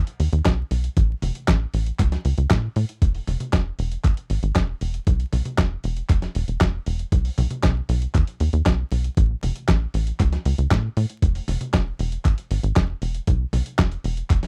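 A straight 4/4 pulse at 117 BPM drives this romantic, playful italo disco fragment in E major, cut from a longer piece, with a thumpy, compressed electronic kick arriving at 0.5 seconds over a gritty, sampler-style soul kit of handclaps, hi-hat, medium-tuned snare and toms. Up front sits a tight, punchy sequencer bass, dark and driving, built from sawtooth, square and triangle tones with a fast-attack filter pluck that decays, ranging from E1 to A2 and thickened by tube saturation. The dry, close 1970s-style studio sound carries vinyl crackle and a tape-warm, dusty grain on the drums.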